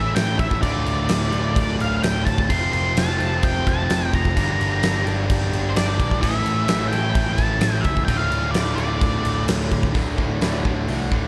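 A huge arena drum kit sits up front from 0.2 seconds, its fat snare, punchy kick and bright crash and hi-hat ringing in a hall-like space. This is a brooding, gritty slice of classic rock in D minor, cut from a longer piece, moving at a straight 129 BPM in 4/4. An octave-fuzz lead guitar carries the melody with a dark, distorted tone and slapback echo until 9.4 seconds, while a cranked stack guitar and a sludgy distorted guitar, the latter tucked into the background with a warm overdriven edge, both drive the riff with overdrive and slapback echo. A picked electric bass gives the low end an amped, warm and punchy weight. The harmony cycles through Dm, F, Gm and A before settling on a D5 when the second section begins at 9.9 seconds, all wrapped in light reverb and studio ambience.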